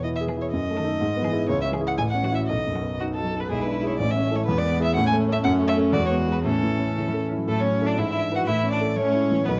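A close, detailed recording in a moderate recital hall, with vinyl crackle, captures this quick, graceful and spirited classical-period movement for piano quartet, cut from a longer piece and played with a rubato feel. A clear concert grand piano with deep bass sits up front as accompaniment, while one violin, rich and focused with vibrato, carries the melody close by. A second violin, distant and expressive with portamento, joins at 0.3 s alongside a dark, soft-attacked cello in the background.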